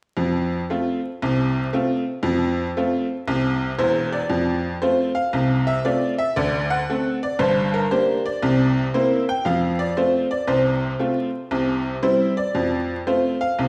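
Swinging eighth notes at 116 BPM in 4/4 drive this short, playful stride piano cut in F major, taken from a longer piece. A lone tack piano carries everything from 0.2 to 13.7 seconds, its metallic, jangly tone sitting up front and ranging from a deep E1 to G5. The sound is bright and percussive with a vintage edge, yet smooth. A lush recital hall reverb surrounds it, giving the sense of a church or concert hall, while vinyl crackle adds a dusty, old-record patina. The harmony opens on F, moves through D7, Gm and C7 from 6.4 seconds, then settles back toward F by 12.5 seconds, with the instrument tuned slightly flat at A4 = 438 Hz.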